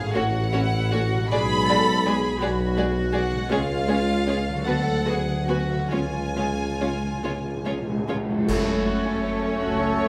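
A warm, intimate violin section carries the melody in this solemn, elegiac slow romantic movement in F# minor, moving in a rubato 6/8 at about 45-56 BPM while a second violin line, background violas and a close cello section play sul tasto with soft attacks over a ringing, very quiet harp, dark bowed double basses with portamento and a smooth-topped tuba. At 5.9 seconds timpani on medium mallets begin a fill alongside bright cymbals and concert bass drum. At 8.5 seconds the whole band accents a new section where a bright solo oboe, a mellow, distant bassoon and a dark French horn section enter, joined by a pure, crisply attacked flute group, all bathed in a wet recital-hall reverb.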